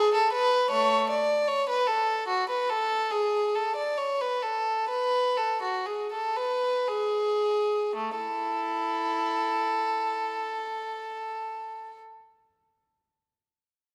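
Serene and dance-like, this brief excerpt from a baroque-style suite movement for unaccompanied violin moves in 4/4 at a flexible 53-78 BPM in A major, tuned to A4 = 442 Hz, slowing down over its first 8.0 seconds before turning to a new section. A single period-style violin plays solo throughout, ranging from A3 to D5 with a reedy, gut-string tone and an airy bow, heard close and up front. A moderate recital hall reverb surrounds the instrument.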